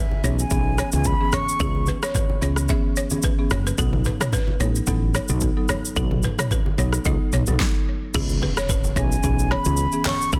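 Afrobeats at 110 BPM in C# minor with a lightly swung sixteenth feel, mellow and hypnotic, where a punchy, up-front deep house drum kit with a softly clipped fat snare and a growly, round fretless bass carry a C#m7 to B7 groove under a dry, buzzing marimba, a woody balafon riff with delay and low-tuned congas in the background, while an airy silver concert flute with vibrato and delay opens the clip and returns at 9.0 seconds, after a brief stop at 7.6 seconds and a very quiet electronic impact at 8.1 seconds, heard in a small room with a dense, heavily limited modern master.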